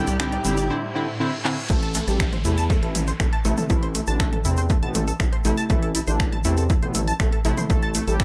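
A dramatic, melancholic slice of melodic techno, cut from a longer piece, opens on a short build-up over Cadd9 where a swarming, warbling drone flickers for under a second, a reverse cymbal fills the break from 0.7 s and a drum fill lands at 1.4 s. The drop arrives at 1.7 s on A minor, and from the opening moments the track is driven by a punchy, tape-toned electronic kick up front and a gritty, saturated synth bass, with a layered techno kit of finger snaps, handclaps, hi-hat and toms, a grainy egg shaker in the background, and riser and downlifter effects. Over the pumping low end, a fat, wave-folded analog synth brass carries the melody with vibrato and analog delay, bright brass stabs ring out through dub echo, and a tight, detuned sequenced synth spins driving arpeggios, all in an echo-heavy mix with light reverb.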